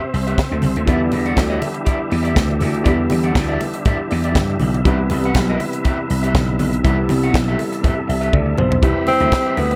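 Disco with a joyful, glamorous air, cut from a longer piece, where a punchy, growly slap bass and a tight funk kit with a high-tuned snare sit up front beneath a dark, slightly broken-up picked guitar, a clean tonewheel organ with key click through a fast rotary speaker, very quiet low-tuned congas, and a boxy grand piano that adds a fill at 7.8 seconds, joined by a drum fill at 8.3 seconds, until a breathy, whispered tenor saxophone enters up front at 9.1 seconds.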